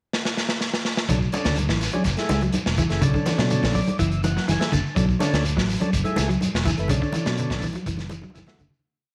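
Driving and intense, this short afrobeat piece opens with a gritty, saturated breakbeat kit fill before fingered electric bass with a round, syncopated riff, a clean picked guitar ostinato colored by ensemble chorus, smooth tonewheel organ stabs turning through a slow rotary speaker, ringing congas and a grainy, distant shekere join at 1.1 seconds, cycling between Bm7 and F#m7 in a moderate echo-chamber room, with an organ fill at 3.5 seconds and a fade-out starting at 6.9 seconds.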